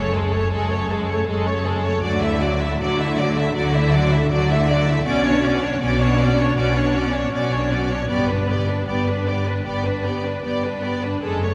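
Sorrowful and longing, this rubato cinematic string passage at 79 BPM, cut from a longer piece, sets a warm first violin melody over a woody second violin line, a distant, rich viola accompaniment, and expressive, soft-attack cellos with dark double basses, all bowed with vibrato, moving through F#madd9, Dadd9, Bmadd9 and G in the long, wet reverb of a church.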